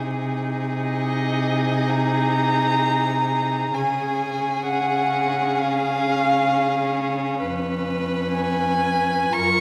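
Rubato phrasing in 4/4 shapes this tender, slow romantic movement for string quartet, cut from a longer piece: a dark, close violin enters at 0.8 s with an expressive melody full of vibrato and portamento, above a rich second violin and a distant, soft-edged viola, while a clear, up-front cello holds a smooth, even bass, the quartet bathed in the reverberant space of a church or concert hall.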